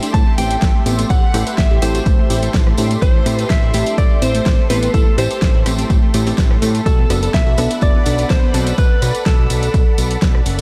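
A lush, detuned unison pad, a glassy wavetable pluck arpeggio, punchy unison pluck stabs, an overdriven deep house kit with a fat snare and a distant jingly tambourine open this dreamy, emotional progressive house excerpt at 125 BPM in A dorian, soon joined by a clean, scooped direct-recorded electric guitar melody, a very quiet floating violin section, a thick, nasal analog bass and a punchy up-front kick, with the pad, plucks, guitar, bass and the kit's hats and cymbals pumping against the kick over Am7 moving to Bm7 at 6.9 seconds in a dark production with light reverb.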